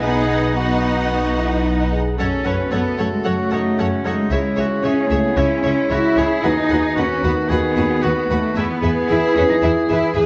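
Adventurous and triumphant, this heroic film-score cue at 113 BPM sets a lush violin section with portamento on the melody above a second violin line, intense violas, mellow French horn chords in the background, brief distant trumpet stabs until 1.9 s, and a smooth cello and rich double bass foundation, as a clear oboe and roomy trombone chords join at 2.2 s inside a wet scoring-stage reverb.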